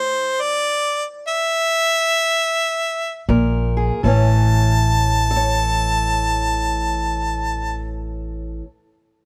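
This laid-back, gritty slice of acoustic country blues, cut from a longer piece, opens with a harmonica playing alone, its tone bright and close-miked, with light vibrato and scooped notes in a jazz-inflected style, as the pace eases back through the opening bars. At 3.3 seconds a fingerpicked steel-string parlour guitar and a pizzicato upright bass enter together beneath it, settling into a swung 4/4 groove. The guitar has a boxy sound with the crisp ring of fresh strings, while the bass, strung with steel, sounds woody and growly down in its low register. The harmonica stays up front as the solo voice until it drops out at 7.9 seconds, and the guitar and bass carry on briefly, the bass stopping at 8.6 seconds and the guitar at 8.7 seconds. A light reverb gives the small group a sense of space.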